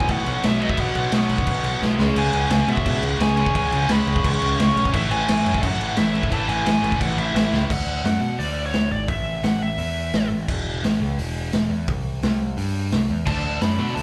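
Rowdy and upbeat, this punk rock excerpt charges along at 173 BPM in a straight 4/4, with a raw garage drum kit, boomy and gritty with dark cymbals, pushed up front beside a growling, overdriven picked bass, both playing throughout, the kit firing off drum fills around 1.8 and 7.5 seconds. A biting lead guitar carries the melody with slapback echo and delay, while three rhythm guitars (a crunchy double-tracked one sitting very quiet, a distorted one, and a bright semi-hollow one) pick out the riff in the background before dropping out at 7.7 seconds and returning at 13.3 seconds. The whole thing sounds like a live club gig heard through the venue's PA, soaked in small room reverb, with chords moving from B5 through C#5 and A5 to D.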